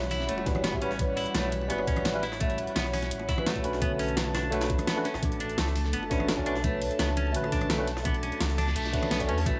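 A straight 4/4 groove at 170 BPM drives this soulful, lush liquid drum and bass passage in B minor, cut from a longer piece. A gritty, thumpy electronic kick enters at 0.5 seconds, sitting with a pop drum kit that brings a fat snare, rim click and metallic hats. Behind them, an overdriven, pitched-up jungle kit adds a high-tuned snare and filtered hats, while very quiet congas and bongos with hard hands add texture. A round, deep sine sub bass anchors the low end as an up-front tine electric piano, coloured by phaser and tape echo, plays accompaniment over chords moving from A13 to Bm9 at 3.6 seconds. An airy, breathy pad with chorus and sidechain pumping holds mellow sustained chords, a bright, twangy clean electric guitar picks arpeggios through digital delay, and a background noise sweep enters at 8.6 seconds, all set in light reverb.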